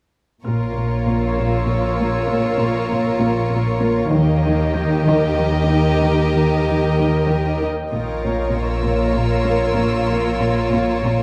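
At 0.4 s the full ensemble enters together in this eerie, mysterious cinematic passage in Bb dorian, cut from a longer piece and moving at 97 BPM in a straight 3/4. A chamber violin section carries the melody with soft-attacked sul tasto bowing and light vibrato, sounding close and intimate, while a second, clearer violin section plays an intense supporting line beneath it. In the background, a bubbling sawtooth texture holds sustained chords through resonant, randomly stepping filters, treated with chorus and its own reverb. A rich cello section plays a riff behind them, another more distant cello section and a smooth, even double bass section anchor the bass, and a very quiet Celtic harp adds mellow, thumb-plucked notes that ring. A lush, high studio violin section sings above from 0.4 to 3.8 s and returns at 7.9 s, as the harmony moves from Bbm to Eb and back to Bbm. The dark, warm production sits in a generous scoring-stage reverb.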